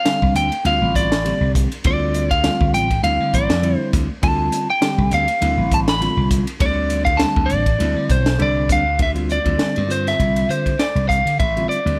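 A 101 BPM groove in 4/4 with a 55% swing on the sixteenths drives this funky, intense electric jazz fusion excerpt in D minor, where a crisp, gritty acoustic drum kit with a punchy kick, high-tuned snare and pumping small-room sound sits up front. Bright, amped slap bass joins at 0.2 s, a clean, bell-like tine electric piano plays over Dm7 that moves to Dm9 at 9.0 s, and a slightly broken-up, compressed lead guitar carries the melody up front with slapback echo in a dry mix.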